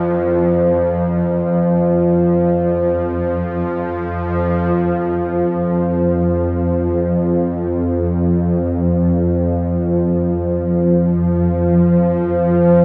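Drifting in free time, this dark, unsettling ambient drone is cut from a longer piece and tuned slightly flat to A4 = 437 Hz. For the first 4.7 seconds a barely audible detuned analog pad holds a C/F chord beneath eerie, inharmonic FM bell arpeggios, while a tense, nasal bowed-like drone sits up front, spanning F2 to F3 with vibrato and its own reverb, and carries on alone until 12.8 seconds. A cavernous cathedral reverb and a dark production with nothing above 7.9 kHz shroud the whole in gloom.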